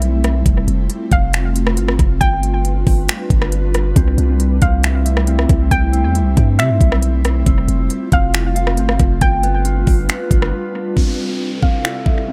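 A long, deep 808-style bass sits up front with a fast attack and decaying sine tone, anchoring this dreamy, floating cloud-rap excerpt in C major at 137 BPM in a half-time 4/4 feel. Beside it, an overdriven trap kit of knocking kick, crisp hi-hats, finger snaps and rim clicks sounds as if re-recorded in a small room, while an ethereal, airy pad of detuned, wave-folded voices holds slow-blooming sustained chords through ensemble chorus, reverb, sidechain pumping and a low-pass filter. A soft, round pluck carries a gentle high melody between E5 and G5, softened by chorus, filtering and tape echo. At 4.0 seconds a dark, clean, fingered electric guitar enters with compressed arpeggios, also filtered and echoed, over a progression moving through F, G7 and C6. The bass drops out at 10.5 seconds for a brief break, and a downlifter sweeps in at 11.0 seconds as the music turns back to C6, all within an echo-heavy digital ambience.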